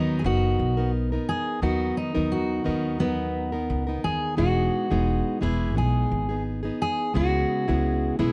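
Light reverb surrounds an up-front mix in this short excerpt of carefree, heartfelt acoustic pop in B major, moving at 87 BPM in 4/4 with a gentle sixteenth-note swing. A dark-toned jumbo steel-string guitar, fingerpicked, carries the melody, while a second fingerpicked, plugged-in jumbo with fresh strings and a full-bodied sound plays the accompaniment. A woody, thumpy pizzicato upright bass with gut strings anchors the low end. All three play throughout the 8.3 seconds over Bmaj7, then Emaj7 at 4.4 seconds and C#m7 at 7.1 seconds.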